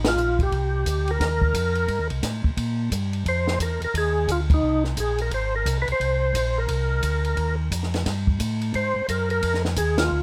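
A smoky, lightly reverberant sound frames this short, bluesy soul jazz organ trio cut, swinging easily in four. A mellow, round tonewheel organ carries the bass line through its slow rotary speaker, clean and dark with a touch of key click, sitting up front from the opening second. A compact cocktail drum kit plays hi-hat, kick, ride and snare with a dry, natural character, its dark cymbals, high-tuned snare and tight kick heard close and present. Over them a second tonewheel organ takes the melody in a fairly narrow middle register, full and lightly overdriven, with second-harmonic percussion and chorus vibrato adding bite to its slowly turning rotary tone. The harmony moves through Cm7, Fm7, back to Cm7 and on to Ab7, with the whole band hitting accents at 0.0, 4.5 and 9.9 seconds before the passage breaks off.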